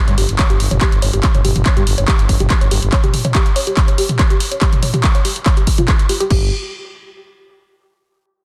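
A straight 4/4 pulse drives this dark, industrial peak-time techno fragment, cut from a longer piece. A barely audible electronic impact opens it, and from 0.4 s a heavy, layered, overdriven kick sits up front as the loudest part. A punchy analog drum machine, re-recorded in a large room, adds crash cymbal, handclaps, hi-hat and toms, with its hats, cymbals and toms pumping against the sidechain. A growling, thick FM bass rumbles between G1 and G2, pumping too, until it drops out at 2.9 s and returns briefly at 6.3 s as the closing section begins. Lower in the mix, a woody, wave-folded pluck riff sits between F4 and C#5, coloured by tube saturation, lush chorus, gritty vintage 12-bit sampler character and dub echo, and it also pumps with the sidechain. A digital ambience surrounds the parts, and the master is dense and heavily limited.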